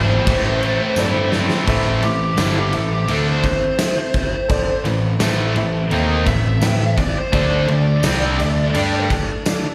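A bluesy overdriven lead guitar with a dark, distorted tone takes a solo from 1.7 s in this swaggering, gritty classic rock piece at 85 BPM in A minor, over a growly, up-front picked electric bass, a gated 80s drum kit with fat snare and punchy kick that enters at 0.3 s, two tight, bright guitar riffs with slapback echo, a very quiet double-tracked fuzz guitar, a woody upright piano with slapback echo in the background, a faint sawtooth string machine of cellos holding sustained chords, and a jingly tambourine from 1.0 s, heard through a club PA with small room ambience.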